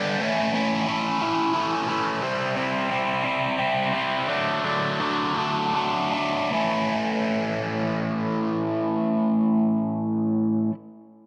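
A bright, overdriven electric guitar from a cranked stack, picked and double-tracked up front with phaser and a moderate plate reverb, plays solo through this anthemic, cathartic rock fragment in a straight 6/8 at 50-60 BPM (dotted quarters) in A mixolydian, moving from A through C and D as it slows from 2.2 seconds, returning to A at 6.5 seconds and ringing until 10.7 seconds.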